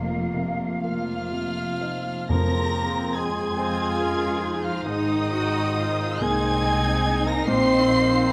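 A dark violin section carries a bittersweet, longing melody with expressive portamento over a lush bed of warm second violins, an airy, distant flute ensemble, a clear grand piano, smooth violas, rich cellos and woody double basses in this rubato cinematic excerpt in 6/8. A solo cor anglais and a mellow French horn section join at 0.8 seconds. At 2.3 seconds a vintage-toned solo clarinet enters as round, soft-mallet timpani sound until 3.5 seconds, all within a close, detailed recording with light reverb.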